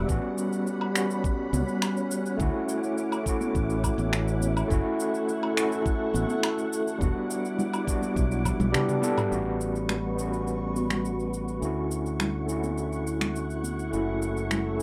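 A rough, roomy home-demo sound frames this smooth sunset chillout fragment, where a barky, overdriven tine electric piano with fast tremolo, sampler grit and digital delay sits up front over a silky string machine swirling with phaser and ensemble chorus, while a bright, punchy fingered electric bass anchors the lush ninth and thirteenth chords, a knocking, tape-warm electronic kick drops out as a drum fill begins around 8.5 seconds, an overdriven R&B kit of finger snaps, shaker, toms and woodblock carries on, and soft-handed congas murmur in the background from 1.5 seconds.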